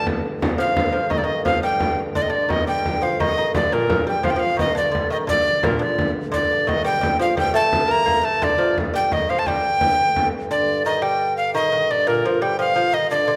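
Medieval dance in 6/8 and G minor, driving yet mysterious, moving at 115 BPM in dotted quarters. A breathy alto recorder carries the melody up front, close-miked, with a crisp chiff, woody tone and expressive vibrato, while a delicate, fingerpicked lute with bright doubled nylon strings plays a second line beneath and a reedy, nasal hand-pumped harmonium holds a dark, breathing drone in the background. A deep, distant frame drum struck with hard hands drives the piece until 10.4 s, all set in the wet wash of a recital hall's reverb in this excerpt of a longer piece.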